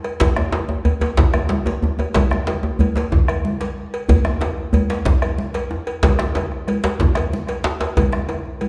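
A steady 12/8 pulse at 124 BPM drives this earthy, powerful West African traditional drum ensemble excerpt, where a deep, dark bombo anchors two djembes (one warm and up front under soft hands, the other hard-struck in the background) alongside ringing congas and a metallic, close and dry cowbell. The ensemble sounds from the opening moment, with the up-front djembe joining at about 0.2 seconds, and the parts fall away between roughly 8.1 and 8.7 seconds, all in the long reverb of a recital hall.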